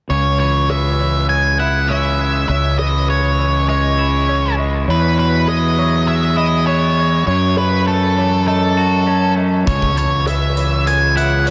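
A straight 4/4 post-rock excerpt, euphoric and soaring, where a dark, fuzz-distorted octave lead guitar carries the melody up front with delay, over a round, punchy overdriven fingered bass, while a clean, compressed semi-hollow guitar with subtle chorus and a soft, felt-muted upright piano trace delayed arpeggios in the background through C#m, Eadd9 and F#m7, until a huge arena drum kit with a punchy kick and hi-hat arrives at 9.7 s, all bathed in a dreamy, reverb-soaked space.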